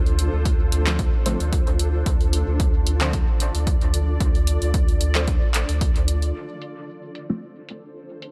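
A smooth, dark sine sub bass anchors this nocturnal, cavernous dub techno excerpt with a gently swung feel, pumping against a punchy, tape-warm electronic kick that plays from 0.5 to 5.9 seconds before the bass drops out at 6.3 seconds. Muted, detuned sawtooth-and-pulse chord stabs carry a phaser, dub echo and a filter sweep. Above them, a cloudy, evolving granular pad with a slow attack and long release breathes under sidechain pumping. An analog drum machine adds handclaps and low-pass-filtered hi-hats with dub echo, all set in a digital ambience.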